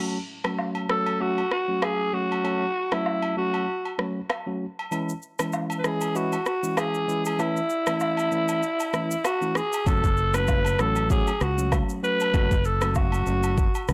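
Afrobeats at 97 BPM with a smooth, mellow, lightly swung feel: a clean tine electric piano up front opens alone, an electronic drum kit with deep kick, rim click and shaker joins at 0.4 seconds alongside acoustic agogo bells, woodblock, tube shaker and group handclaps, a raspy, growling alto saxophone with vibrato carries the melody over F#m, C#m and A, and a round, punchy fingered bass arrives at 9.9 seconds as the break ends, all in a dry, gritty recording with digital ambience.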